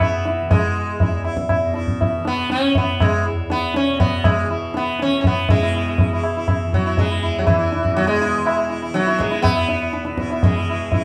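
From the opening moment, an up-front, plectrum-plucked sitar with a buzzing, round tone and shimmering sympathetic strings carries a meditative, devotional melody in raga bhupali on E over a softly plucked, warm tanpura drone and close, high-tuned, ringing tabla, in this 11-second Hindustani classical excerpt at 121 BPM in 5/4, played live in one room with moderate studio reverb.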